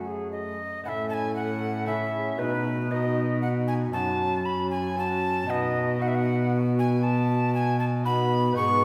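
A courtly, rustic Renaissance-style consort dance in a straight 3/4 at 116 BPM, this short excerpt cut from a longer piece sets a hollow, softly attacked concert flute melody against a chiffy, tongued alto recorder second line placed up front, with a clear, close-miked trombone and, in the background, a delicate, fingerpicked double-strung lute, all over a nasal, gut-strung bowed cello bass, moving through F#m, A and B chords in the lingering reverb of a recital hall.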